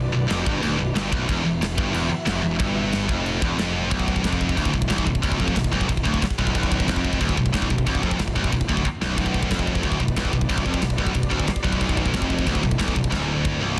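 Dark and heavy, this 182 BPM heavy metal excerpt in B phrygian drives two bright, high-gain electric guitar riffs, one up front and one scooped in the background, over a growly fuzz-overdriven bass and a tight, polished drum kit with bright cymbals that enters at 0.3 seconds and rolls through fills at 8.8 and 13.1 seconds, while a lush bowed string section with vibrato and portamento holds sustained chords at the start and returns at 9.2 seconds, all in a dense, heavily limited modern master.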